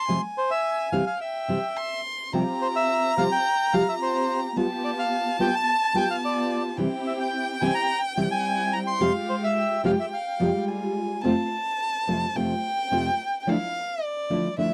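A reedy bandoneon carries the melody of this tense, melancholic tango fragment in a rubato feel, shadowed by a dark, close solo violin with vibrato and portamento that takes over as soloist at 11.2 s, above fingerpicked, full-bodied nylon-string guitar and lush, woody bowed string-section stabs entering at 2.3 s, captured in a dry 1970s-style studio sound with light reverb.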